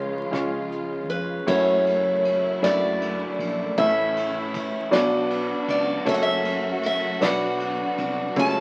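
Heard through the crackle of a very old 78 rpm record and a wet studio reverb, this heartbroken, intimate acoustic folk-pop ballad in 6/8 is a short cut from a longer piece. A woody upright piano sits up front with long sustain, a symphonic string section lays down lush bowed chords with a soft attack and expressive vibrato, a round, dark fretless bass holds the low end, and a small-room drum kit played with brushes joins at 0.3 s. At 1.1 s a bright, boxy picked steel-string acoustic guitar takes the melody as the chords move from F#m7 through Dadd9/F#, A and Bm.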